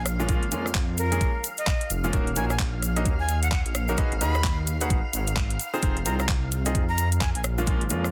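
A breathy jazz flute with tape echo opens this late-night, soulful two-step garage excerpt at 130 BPM in Eb minor over a silky string machine pumping in the background and a deep, rumbling detuned saw bass, soon joined by a garage kit of handclaps, metallic hats and rim clicks with soft clipping on the snare, a grainy cabasa, clear baby grand piano stabs with tape echo, and a knocking electronic kick, all moving through Bbm7, Ebm7, Abm7 and Fm7 with a swung 16th-note feel in a dense, heavily limited mix.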